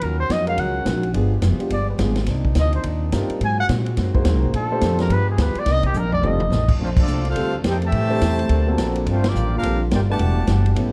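A dark, lightly reverberant production frames this brassy, joyful big band swing at 212 BPM in Bb major, with a mellow, roomy trumpet solo leading over a woody pizzicato upright bass and a vintage drum kit with a punchy kick and a rolled-off top. A grand piano with long sustain enters at 0.5 seconds beside a very quiet, bright picked steel-string acoustic guitar and a tight, brilliant trombone section holding chords in the background. After a drum fill at 5.9 seconds, the solo ends at 6.8 seconds, and a clear trumpet section takes the melody while a warm trombone section plays a second line behind it, with band accents punctuating the swing.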